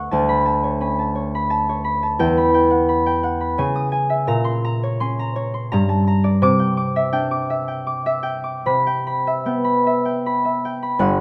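In a rubato 3/4 drifting between 72 and 89 BPM, this dreamy, peaceful classical fragment for solo concert harp, tuned to A4 = 438 Hz, sets thumb-plucked, ringing tones up front in a moderate recital-hall reverb as it spans G1 to D#6 through lush added-ninth chords from Bm9/D through Emadd9, C#madd9, Bbmadd9 and Gmadd9 before settling on Cadd9 and a final Cmaj7 at 8.7 seconds.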